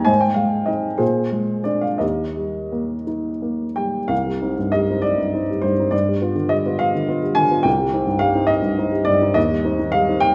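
A romantic classical character piece for solo piano, this short excerpt cut from a longer work moves at a rubato 6/8 lilt of roughly 56-73 BPM, counted in dotted quarters, with a warm, passionate mood. A single upright piano carries everything from 0.0 to 10.3 s, spanning C2 to Bb5 with an intimate, woody tone, up front in the sound, where the audible action noise of the instrument adds a natural, close-up character. The opening passage sits in Eb major, moving through Ab, Bb9 and Eb before the music turns to C minor at 4.1 s. From there the harmony passes through G7 back to C minor, settling on Cm/Eb near 9.4 s. The piano is heard in a recital hall with a reverberant 1.4-second decay, and the instrument is tuned slightly high, to A4 = 445 Hz.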